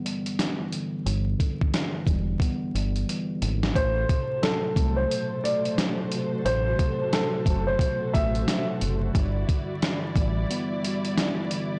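A mellow tine electric piano opens this boom-bap hip-hop excerpt with clean chords filtered through cassette tape, and a dusty sampler-style drum kit arrives almost at once, its thumpy kick and fat snare carrying 12-bit grit and the air of a large room. A deep, round fingered electric bass enters at 1.1 seconds, punchy and up front with transformer saturation, and a drum fill runs from 2.4 seconds up to the next section at 3.8 seconds. There a dark, woody upright piano takes the melody with delay and long sustain, set over a lush bowed string section that slipped in a moment earlier, holding sustained chords with vibrato. The swung groove and tough, gritty mood are pushed further by a blown-out, overdriven sound dusted with vinyl crackle and very little reverb.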